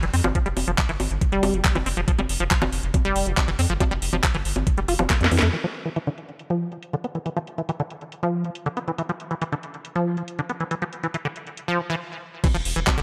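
Intense and alien, this psychedelic trance excerpt moves at 139 BPM in a straight 4/4, centred on E phrygian. A squelchy, resonant acid bass riff sits up front from start to finish, its sawtooth tone thickened with chorus, delay and sidechain pumping, and a filter sweep runs across it from 5.5 to 12.4 seconds. Beneath it, a round, deep analog bass holds the low end through the opening, drops out at 5.5 seconds, and returns briefly near the close. A knocking, tape-tinged electronic kick enters at 0.4 seconds and drops out at 5.2 seconds, just before that bass, while a garage kit of cracking snare, metallic hi-hats, bongos, handclaps and crash cymbal, all low-pass filtered in a small room, plays throughout. A drum fill and a band accent mark the turn into the second section, and a stop at 12.0 seconds clears the way before the kick and bass come back under light reverb.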